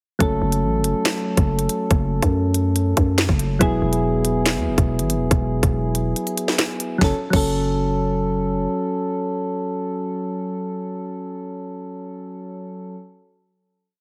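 The recording is dry and heavily compressed, with a loud, squeezed radio-like sound. This is a whole drill piece in F# minor at 141 BPM, played in a half-time 4/4 feel, and its mood is dark and tense. Up front, an electronic drill kit hits with a hard-clipped kick, a sharp snare layered with handclaps, crash cymbal and crisp skipping hi-hats full of fast rolls, the kit carrying the sense of a large room. A growling, buzzy 808-style bass holds long sub-bass notes that follow the kick and bend with pitch slides. Soft, round electric-piano-like synth keys with a detuned chorus shimmer repeat held, open-voiced chords like a sampled loop, moving from F#m to Eadd9 through the short hook. The kick drops out at 6.2 seconds, and the hook resolves to a final F#m chord at 7.0 seconds. The drums fade by 7.5 seconds and the bass by 8.7 seconds, after which the mellow keys ring on alone until 12.9 seconds.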